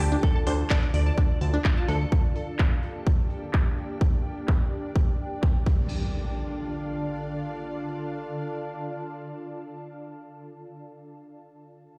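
An electronic impact opens this emotional, bittersweet progressive house excerpt, alongside a clean, direct-recorded electric guitar melody, a lush detuned unison pluck playing arpeggios, a fat, thick analog bass and a shimmering, ethereal ambient pad, all pumping to the sidechain. The picked, compressed guitar carries tape echo and ensemble chorus. The sawtooth pluck bites with a noise layer and a moving notch, and trails off into dub echo. The bass and guitar drop out around 2.1 seconds, while the dark, granular pad with its octave-up shimmer holds the chords from D minor to G minor and back. A punchy, up-front electronic kick and a house kit of crisp, low-pass-filtered hi-hats, handclaps and crash cymbal drive the first section under a filter sweep, both set in small-room ambience, until the impact returns at 5.7 seconds and they stop at 5.8 seconds beneath the lingering pad. The whole mix sounds as if played on a big sound system in a bare stone room.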